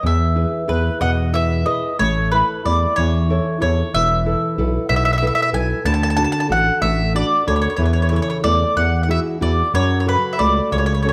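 A round, up-front mandolin carries the melody in this lively, romantic excerpt of an Italian serenade in the folk tradition, its picked double strings ringing in A major. Beneath it, a thick, growling FM bass with a fast attack and sustained tone sits just as far forward. A small, fingerpicked nylon-string guitar provides the accompaniment, with finger squeaks audible on its strings. A second, softer mandolin line appears briefly from 0.7 to 2.0 seconds. The tempo is 62 beats per minute in a straight 6/8, with the harmony moving from E through A, Esus4 and D before reaching A/E, Eadd9 and F#m, all set in a moderate recital hall reverb that lends the recording a sense of space.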